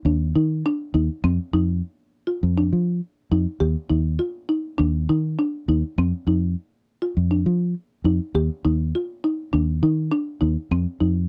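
Driving and defiant, this short afrobeat passage from a longer piece moves in a straight 4/4, with a fingered electric bass sitting up front, dark and foam-muted, under a marimba played with soft mallets that spins woody, mellow arpeggios. The harmony shifts from an Ebmaj7 color to bare F5 chords broken by chordless stretches, while the dry, close 1970s-style studio sound carries only a light reverb.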